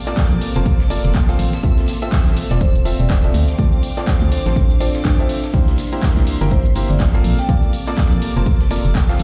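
Piano house with a soulful, energetic lift and a swung groove, heard in a short cut from a longer piece. A clear, woody upright piano carries the riff up front, its action noise audible and its tone polished, with a digital delay trailing it and a sidechain pump breathing through it over chords that move from Bbmaj7 through Fmaj7/A, Dm7 and C7. Beneath it sits a hollow, organ-like FM bass with a fast, percussive attack that decays darkly, while a punchy electronic kick lands up front, re-recorded in a large room along with an analog drum machine's handclaps and hi-hat. A gritty, compressed breakbeat-style kit adds filtered hi-hat and a high-tuned snare in the background, and a marimba with medium mallets plays a warm melody through sampler grit and digital delay until about 8.2 seconds. A rich, bowed chamber violin section holds smooth vibrato chords far back, joined by a deep, moody ambient pad with chorus and its own reverb, both pumping against the kick.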